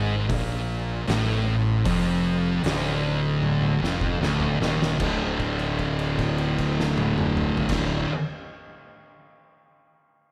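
A dark, distorted fuzz guitar sits up front with a heavy riff in this brooding stoner and doom metal passage, cut from a longer piece, while a second, mellower fuzz guitar plays its own riff in the background and a growly, overdriven fingered bass rumbles underneath. An oversized, low-tuned acoustic kit with a boomy kick, fat snare and dusky cymbals enters at 0.3 seconds, its gritty, saturated sound carrying a stone-room brightness, and plays a fill from 3.4 seconds. At 5.0 seconds the harmony shifts from a minor chord to a bare power chord and settles into a held note, all in a dry, close sound.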